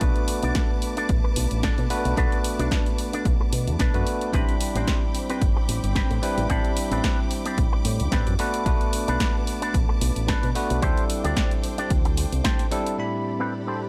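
This cosmic, sensual nu-disco excerpt at 111 BPM, with a light 16th-note swing in A dorian, opens at once on a punchy, up-front electronic kick and a tape-warm house kit of filtered hats, shaker, snare and crash, beneath a fingered electric bass with envelope filter, tube saturation and sidechain pumping, a dark, compressed envelope-filtered guitar riff trailing tape echo, a bell-like tine electric piano with its own echo and pumping, and lush bowed symphonic strings holding soft-attack chords as the harmony moves from Bm7 through Am11 to D7sus4 in a dry, close sound, with the bass dropping out at 12.4 seconds.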